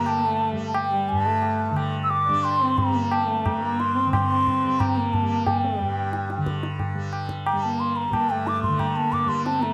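Introspective and solemn, this fragment of Hindustani classical music in raga Kafi on G moves at a straight 90 BPM in 4/4: an airy bamboo bansuri with vibrato, a crisp attack and plate reverb carries the melody, a rich, bowed sarangi adds an expressive, gliding second line with portamento and sympathetic-string resonance, a softly plucked, buzzing tanpura holds the drone, and high-tuned, ringing tabla enters at 0.1 s, close and dry, within a dark studio production with moderate reverb.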